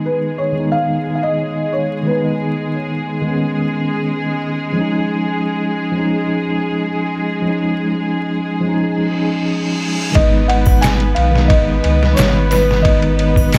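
In a straight 4/4 trip hop pulse, this melancholic, dark excerpt opens on a mellow tine electric piano, colored by tremolo, 12-bit sampler grit and tape echo, over distant, smooth bowed symphonic strings, while a soft, boxy felt-muted upright piano sings a brief, intimate melody with its own tape echo. An electronic reverse cymbal rises at 9.0 s, and the upright piano returns just before the entrance at 10.2 s of a gritty, compressed, pitched-down sampler drum kit with a thumpy kick and ride and a deep, round sine sub bass. Triangle and tube shaker soon join, faint in the background. The whole cut sits in a moderate echo chamber reverb beneath a layer of vinyl crackle.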